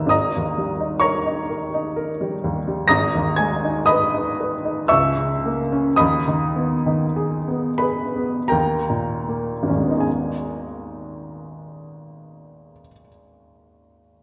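A clear, woody upright piano sits up front in this brief fragment of a romantic classical nocturne, its intimate tone carrying audible action noise and a short, natural sustain. The mood is wistful and mournful, unfolding slowly in a rubato three-beat metre across a range from deep bass to high treble. The opening passage gradually slows from 1.5 to 10.1 seconds, moving through harmonies such as D#7/G#, G#m and A#dim/C# before settling on D#7. At 10.1 seconds a new section begins on G#m and carries the piece to its cut-off at 14.2 seconds. A wet recital hall reverb surrounds the instrument, and the production has a dark, warm glow.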